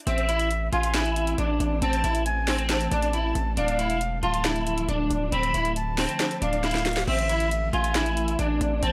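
Trap hip hop at 137 BPM in a half-time 4/4 feel, this dark, melancholic excerpt in A harmonic minor pairs a slightly broken-up, chorused electric guitar melody with a vibrato-laden flute line echoing on tape, over a heavy, aggressive distorted 808 bass, a trap kit of sharp snare, metallic hats, handclaps and crash with a fill at 6.6 seconds, and an ethereal detuned pad entering at 0.7 seconds in the background, all moving from Am to Dm and back in a dry, gritty digital ambience.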